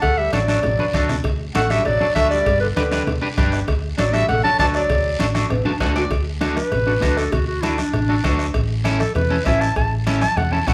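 A live band in one large studio room with moderate reverb plays a joyful, danceable cumbia excerpt at 197 BPM in D major, where an up-front, close-miked clarinet carries the melody over a breathy tenor saxophone second line that drops out at 5.3 seconds, a dark, round hollow-body electric bass, a slightly broken-up, twangy electric guitar accompaniment, a soft-beaten bombo, background congas, saturated cowbell and timbales and a raspy guiro, with a drum fill at 0.8 seconds, then a drum fill and a clean guitar fill at 5.5 seconds leading into a clarinet solo from 6.1 seconds.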